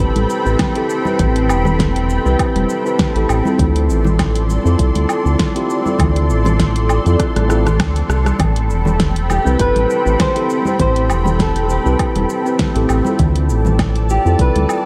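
Relaxed and wistful, this sunset chillout excerpt moves at 100 BPM in A minor with a gentle sixteenth-note swing, as a mellow tine electric piano with diffuse ambient delay and a lush, detuned unison pad treated with chorus and phaser drift over Am9 and Dm7 chords, anchored by a round, dark analog bass sitting up front. A tape-warm deep house kit with fat snare, hi-hat, rim click, cabasa and woodblock pairs with a deep electronic kick and soft-handed, ringing congas in the background, with a drum fill at 7.2 seconds. At 9.3 seconds a boxy, fingerpicked flamenco guitar enters carrying the melody through tape echo, all bathed in a dreamy cathedral reverb.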